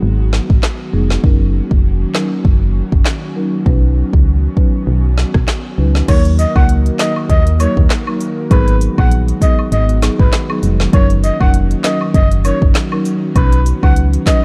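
Tough and hypnotic, this dancehall groove rolls along in a swung 4/4, cut from a longer piece and wrapped in a dark, dry production. A punchy, round FM bass sits up front with a fast attack and decaying notes, while an electronic afro-pop drum kit pairs a deep kick and woody snare with crisp hats, rim clicks, handclaps and crash cymbal, its sound tape-warmed and re-recorded in a small room. Underneath, an airy pad holds sustained chords with a slow attack, chorus and sidechain pumping, and from 0.9 seconds a mellow marimba played with soft mallets adds round, rosewood-toned accompaniment. At 6.1 seconds a breathy, flute-like synth lead enters with chorus, delay and vibrato, carrying a high melody over chords moving through Ebm, Abm7, Gb6 and Badd9. At the same moment a background layer of woodblock and cabasa joins in, its acoustic shaker and group handclap textures adding small-room detail.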